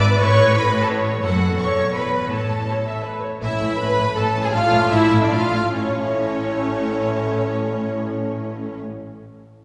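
A wet concert-hall reverb with a 2.4-second decay sets this short cut from a longer piece further back in the room, with a small-room ambience clinging to it as well. It is a dramatic yet graceful and cheerful romantic movement for symphony orchestra in A major and 3/4, moving fast at 140-180 BPM with a rubato feel and easing back between 2.9 and 5.7 seconds. A close, rich studio violin section carries the melody with smooth vibrato, above a lush, more distant second violin line and an intense viola accompaniment. Clear cellos and focused double basses hold the bass in the background, both bowed with vibrato. The harmony moves from A through F#m and E5 back to A, and at 3.4 seconds a warm, roomy French horn section joins with sustained chords as the harmony shifts to Dm/A before settling back on A.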